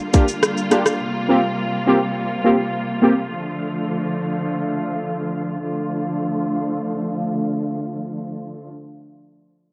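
Hypnotic and sultry, this brief dancehall excerpt in D minor at 104 BPM opens with a lush, bowed string section holding bright, vibrato-laden chords with sidechain pumping through to 8.7 s, joined by an overdriven island pop drum kit of tight kick, metallic hats, rim click and shaker that stops at 1.0 s, while punchy, detuned sawtooth synth brass stabs with chorus and a filter sweep play until 3.1 s, all colored by cassette tape grit and a moderate spring reverb over a Bb6, C7sus4 and Dm progression.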